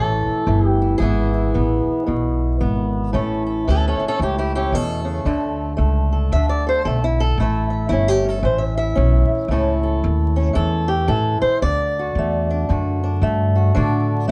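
A boxy, fingerpicked acoustic guitar and a woody, thumpy pizzicato upright bass open together, both up front, in a laid-back, soulful acoustic country blues at 113 BPM with a swung 4/4 feel in A major, tuned to A4 = 435 Hz. From 3.1 s the steel-string guitar takes a solo over the bass through chords moving between A and D. Light reverb and a layer of vinyl crackle give this short cut from a longer piece an aged, intimate sound.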